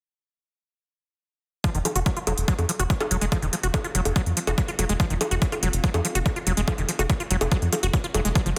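An alien, intense slice of psychedelic trance, cut from a longer piece, runs at 143 BPM in a straight 4/4. Four parts arrive together at about 1.6 seconds, with the sequencer bass following a moment later at 1.7 seconds. An overdriven electronic kick drum sits up front with a punchy, layered weight, joined by crisp, overdriven electronic hi-hats and bongos that were re-recorded in a large room. Underneath, a tight sequencer bass built from detuned sawtooth, square and triangle waves drives the groove with a dark filter pluck and fast, decaying notes. Above it, an overdriven acid bass riff squelches and grits through a resonant filter sweep, its saturated tone carrying sidechain pumping and trailing dub echo. Very quietly in the background, a warbling, lo-fi tape-like pad adds a nostalgic haze of ring modulation, chorus and slow-blooming sustained tones. The mix has light reverb and a digital ambience, pressed into a dense, heavily limited modern master.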